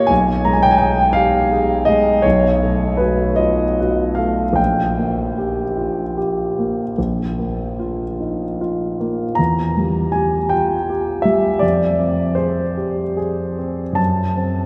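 This is a romantic classical nocturne for solo piano, dreamy and nostalgic in mood, unfolding in a slow, rubato 12/8 at roughly 48-57 beats per minute counted in dotted quarters. A concert grand carries everything alone across the whole 14.7 seconds, reaching from a deep Bb1 up to Bb5. Its tone is intimate and natural, with long sustain and audible action noise from the instrument's mechanism, and it sits up front in the sound. Around it spreads a wet cathedral reverb with a 4.8-second decay, giving the notes a lingering, spacious halo. The harmony drifts through shaded colours such as Abm/Cb, B7, Gm7/Bb, Edim and Fm before arriving at F#dim near 14.0 seconds, as this passage is cut from a longer piece.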